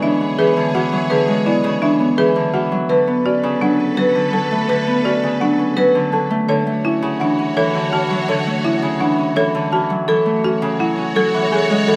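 Set in an unusual five-beat metre with a straight, even pulse, this bright and propulsive passage of minimalist classical pattern music is cut from a longer piece, tuned slightly high to A4 = 442 Hz. A marimba played with medium mallets carries the melody in its upper register. A second, folk-style marimba with hardwood bars spins arpeggios in the middle range, its tone woody, dry and rustic. Beneath them a fingerpicked Celtic harp, acoustic and ringing, sits up front in the mix as the accompaniment. A symphonic violin section holds sustained, bowed chords with vibrato, sounding lush yet focused, a little further down in level. All four parts play together for the whole 12 seconds over a progression of E13, Bm7, Dmaj7 and A6, heard from further back in a large studio with a moderate reverb.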